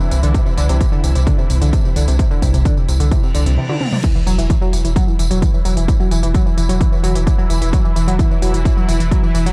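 A dusty, warbling pluck riff opens this cut from a longer driving peak-time techno track, heard alongside a swarming, detuned drone and a techno drum kit of crash, smooth hats, tambourine and toms. A round sine sub bass and a heavy, up-front electronic kick follow almost at once, the bass given tube saturation and a low-pass filter while the pluck carries chorus, overdrive, digital delay and gritty 12-bit sampler crunch over a Cadd9 chord. The pluck, drone and bass all pump against the kick, and the granular drone evolves through its own reverb and phaser, lending the groove a hypnotic, tense pull. At 3.3 seconds a reverse cymbal rises into a short break and drum fill, and the drop lands at 4.0 seconds with an electronic impact and sub drop as the chord gives way to an open, chordless stretch. The mix sits dark and tape-toned, with the kit and kick re-recorded in a small room for an intense, close feel.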